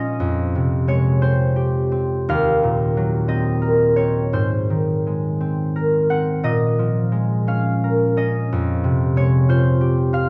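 Classical solo harp in a wistful, mysterious mood, this short cut from a longer piece drifts at 58 BPM in a rubato 6/8 with uneven beats, its fingerpicked concert harp sitting up front with a ringing, acoustic tone from Eb2 to Gb5 as it moves through Fm9, Ebm6, Abadd9 and Bbm7 before returning to Fm9 at 8.5 seconds, all wrapped in a wet recital hall reverb and a dark production.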